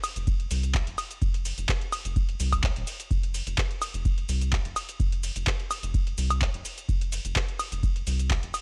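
A booming analog drum machine opens this driving, trippy acid house excerpt at 0.0 seconds, sitting up front with handclaps, metallic hi-hats, ride cymbal, shaker and woodblock, touched by studio reverb. At 0.2 seconds a round, nasal analog bass enters, its dark, sustained tone with a fast attack moving between Eb1 and C2 and pumping against the beat through sidechain compression. A deep, tape-tinged electronic kick drum arrives at 0.3 seconds, giving the groove its weight at 127 BPM in 4/4 with a slight 16th-note swing. The whole passage stays in one section, a short slice cut from a longer track. The sound is a gritty hardware recording set in a digital ambience.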